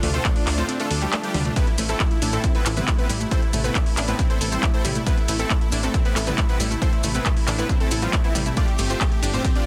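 A huge, lush supersaw leads this euphoric, bittersweet uplifting trance excerpt at 137 BPM in A minor, its bright detuned chords carrying the melody with sidechain pumping and digital delay. Beneath it, a fat, thick analog bass with a sawtooth and square-wave core pumps in step with the sidechain, while a round, evolving analog pluck with chorus spins arpeggios in the background. A very quiet unison pluck adds a punchy second line, and a shimmering, ethereal pad with an octave-up shimmer holds sustained chords at a soft level. The punchy, up-front electronic kick drops out from 0.7 to 1.6 seconds, and a layered techno kit brings handclaps, metallic hats, ride cymbal and toms, with grainy, close and dry maracas entering at 1.6 seconds. The harmony moves from Dm to Amadd9 and then G7sus4, all set in digital ambience with a dense, heavily limited modern master.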